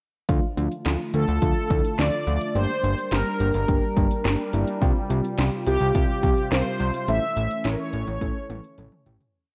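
Driving and nocturnal, this short synth-pop piece in D minor moves at 106 BPM in a straight 4/4, with a dark production set in a lush hall reverb. A house drum kit sits up front with a punchy kick, cracking snare, bright hats and toms in an overdriven, straight drum-machine beat, while a fat, saturated analog bass in a low register drives a sequenced synth-bass line with a filter pluck. Underneath, a mellow FM electric piano with chorus plays soft, round, warbling triads in an eighths chord rhythm, and a sweeping resonant pad with chorus holds evolving, detuned sustained chords in the background. From 1.1 seconds an analog synth brass takes the melody up front, bold and brassy with chorus, tape echo and vibrato, phrasing a motif-based song line. The chords move from Dm through Gm and Csus4 to A, and the piece fades out from 7.1 seconds as a drum fill arrives at 8.2 seconds.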